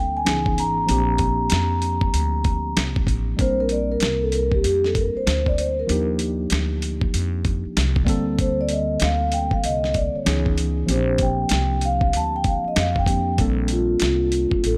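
Bathed in studio reverb, this relaxed, smooth jazz-hop excerpt sits in Bb major at 96 BPM in 4/4, with a swung sixteenth-note feel. A mellow, soft-mallet vibraphone with its motor off carries the ringing, metallic melody up front and takes a solo from 3.4 to 13.4 seconds, over clean tine electric piano chords heard through built-in speakers and a woody, dark pizzicato upright bass on gut strings. A gritty, overdriven sampler-style drum kit enters at 0.3 seconds, compressed and forward, with a thumpy kick, fat snare and hi-hat, as the harmony moves through ninth and thirteenth chords.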